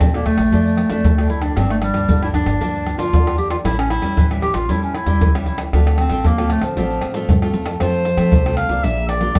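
A solo clarinet in a classical style carries the melody up front, its tone warm yet distant and roomy, across this brief, bittersweet and lively fragment of samba and choro. Underneath, a bright nylon-string guitar is fingerpicked in a classical manner, and an upright bass plays pizzicato with a woody, steel-stringed sound. Egg shaker, a tight surdo, pandeiro and tamborim sit up front in a small-room sound, driving a straight 4/4 feel at 115 BPM in D minor. The harmony moves through Bbmaj7, Gm7, A7 and Dm7 before a new section arrives at 7.8 seconds with F and Bb chords. A moderate studio reverb surrounds the ensemble, and the clip is cut from a longer piece.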